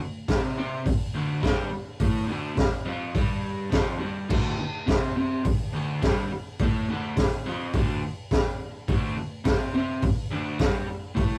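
Swaggering and raw, this garage rock excerpt moves at 105 BPM in a straight 4/4, built on a D5 chord. A crunchy, overdriven electric guitar, picked and double-tracked, drives a riff from the first instant to 11.4 seconds, while a raw acoustic kit enters at 0.3 seconds with a boomy kick, high-tuned snare, hi-hat and crash, its saturated, gritty tone rolled off at the top. Both parts sit up front in a rough rehearsal-room recording with a short, wet booth ambience.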